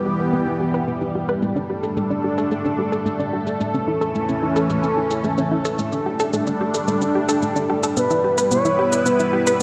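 Nocturnal and nostalgic, this synthwave passage cut from a longer piece rests on a thick, detuned sawtooth pad that holds sustained chords through Em, Gsus2 and A, coloured by chorus and phaser and sitting up front. A round analog pluck spins arpeggios roughened by 12-bit sampler grit and digital delay, while a tape-toned electronic shaker sits low in the mix, and both parts carry a filter sweep throughout. At 8.0 seconds a smooth, mellow synth lead with vibrato enters with a melody, and a spacious hall reverb with a 2.6-second decay surrounds the sound.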